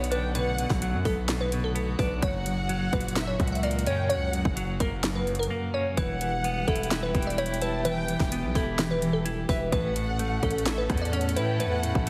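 An overdriven trap drum kit sits up front, with a hard-clipped kick, sharp snare and bright hi-hats driving this hard-hitting, eerie hip hop fragment in a half-time feel. The drums drop out briefly from 5.5 to 6.0 seconds. Beneath them a distorted 808-style bass hits heavy and saturated, with a fast attack and a gritty noise layer. A glassy, detuned wavetable pluck carries the melody with a crystalline, warbling chorus. A clean, dark semi-hollow electric guitar with tremolo plays accompaniment, also up front in the mix. A lush, distant violin section with digital delay adds a vibrato-rich second line, while a dark chamber string section holds soft, bowed chords in the background over a Bm, F#, Em and A progression. The whole track sits in a moderate concert hall reverb and has a heavily compressed, radio-like sound.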